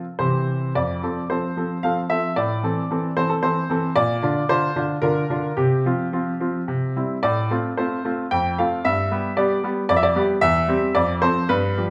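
Graceful and cheerful, this short cut from a longer classical-period piano sonatina moves in F major at 112 BPM in 3/4, with a rubato feel that lets the phrases breathe. A bright baby grand piano plays alone for the whole 11.9 seconds, its brilliant, natural tone sitting up front with a short sustain that keeps each note clear. The part spans from E2 up to G5. Beginning around 0.8 seconds, the harmony travels from F through A minor, B-flat and a suspended C before settling on C. It then returns to F and moves through G, G7 over F and C over E toward a close on F at 10.9 seconds. A moderate recital hall reverb surrounds the instrument, giving it a sense of space.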